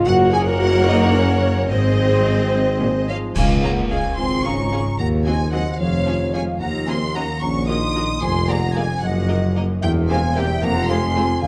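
In a straight 6/8 at 74 BPM in Db major, this playful, mischievous orchestral film cue, cut from a longer piece, sets a rich, expressive violin melody over a pure flute ensemble and a distant second violin line, with lush viola accompaniment, mellow French horn chords and ringing harp arpeggios in the background, while clear cellos, dark double basses with portamento and a mellow tuba carry the bass, and bright clash cymbals with concert bass drum mark a band accent at 3.4 seconds, all in a moderate scoring-stage reverb.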